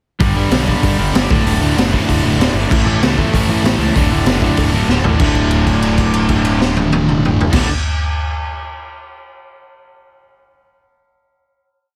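A fast, straight punk rock groove from a raw garage drum kit, up front with a high-tuned snare and boomy kick, drives this short, energetic and rebellious whole piece, with a growly fuzz-picked electric bass pushing eighth notes beneath it. Two crunchy overdriven guitars hammer bright eighth-note power chords through a G, D, A, D riff, while a double-tracked high-gain distorted guitar rings out chords further back in the mix. A drum fill at 4.9 seconds leads into a held D5 chord from 5.2 seconds, all captured with little reverb and a dense, heavily limited master.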